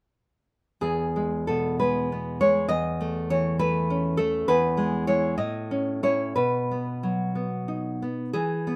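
Romantic solo classical guitar in E major, this short passage carries a warm, nostalgic mood. The tempo drifts between 58 and 69 BPM in 6/8, pulled and stretched with rubato. A fingerpicked nylon-string guitar plays alone, sitting up front in the mix, spanning from a low E2 up to D#5 and sounding from 0.8 to 8.8 s. Its harmony rests on E, moves through A over an E bass and back, then touches A before arriving on B near 6.4 s. Light reverb adds a soft sense of space around the acoustic tone, and the passage is cut from a longer piece.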